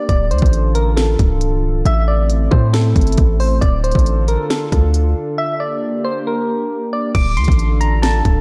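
A punchy, heavy 808-style bass with a fast attack and decaying tail sits up front in this dark, eerie trap excerpt at 136 BPM in D minor, felt in half-time alongside a trap kit with a hard-clipped kick, sharp snare, crisp hats and crash cymbal, all roughened by vintage 12-bit sampler grit. Above them, soft, round electric-piano-like synth keys carry a mellow melody through chorus, delay and a low-pass filter sweep, while a warbling, detuned, nostalgic tape-like pad holds slow-attack chords moving from Dm through Am and Gm. A break arrives at 5.4 seconds before a new section lands on Dm at 7.1 seconds, with light reverb around the whole mix.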